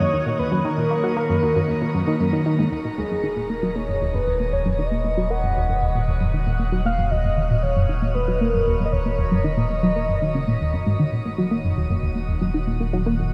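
A tight, driving sequenced synth riff with a wave-folded, gritty 12-bit edge and phaser and delay opens this mysterious, cosmic stretch of ambient space music, joined at once by an evolving, detuned resonant pad and a shimmering, retro pulse-width lead that carries the melody with vibrato and chorus. A filter sweep moves over the sequenced riff, and at 2.7 seconds a round, deep sine sub bass enters beneath it as the pad fades in further. The mellow, up-front lead drops out at 10.7 seconds, and the whole passage, cut from a longer piece, sits in a moderate shimmer reverb with a cassette-tape hue.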